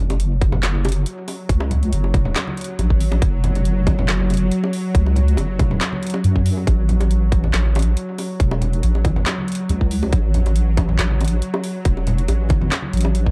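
Cavernous and dark, this half-time deep dubstep fragment in F# minor at 139 BPM, shifting from F#5 to A5 at 6.7 seconds, rests on a saturated, detuned, up-front wobble bass with chorus, a tight, layered electronic kick, a garage kit of handclaps, metallic hats and a woody snare, ringing hard-hand bongos and congas with dub echo, and a tense, string-like bowed drone with vibrato and its own reverb, all in a dry, dusky mix.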